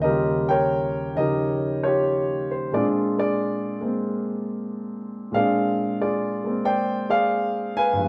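Swinging eighth notes at 91 BPM in 4/4 give this short solo jazz passage an easy lilt, loosened further by rubato, with a sophisticated, relaxed mood in Bb mixolydian. A lone concert grand piano sits up front, its deep bass and open tone spanning Eb2 to Ab5 as the harmony moves from Eb9 to Bb9 at 2.7 seconds. A moderate stone-room reverb surrounds the playing with a live-in-the-room feel before the fragment breaks off at 8.1 seconds.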